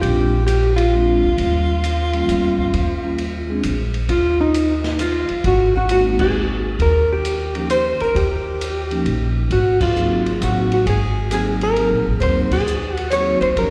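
A clean, dark hollow-body guitar carries the melody from the start of this sophisticated small-group swing-and-bop excerpt in 3/4 at 133 BPM, with a breathy, subtone alto saxophone on a second line, and is joined by a woody, growly upright bass up front, a dark, smooth kit with a boomy kick, and ringing soft-mallet vibraphone with slow motor vibrato that drops out at 3.6 seconds and returns at 5.9. Slapback echo on the guitar, sax and vibes, band accents and recital-hall reverb give it the feel of a live gig heard through the venue's PA.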